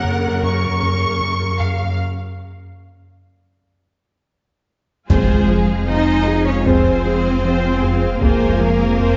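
Heard from further back in a wet scoring-stage reverb with dulled highs, this vast, futuristic hybrid orchestral and electronic film-score excerpt at 77 BPM in F phrygian opens on a Gb chord with a clear, distant violin melody over bright violas, rich cellos, a hollow chorused pad, a glossy chorused synth bass riff and a very quiet felt-muted upright piano, then at 5.1 seconds shifts to F minor as a second rich violin line, dark background French horns, a punchy pitch-dropping sub bass, double basses, heavy background taiko and a very quiet electronic impact arrive.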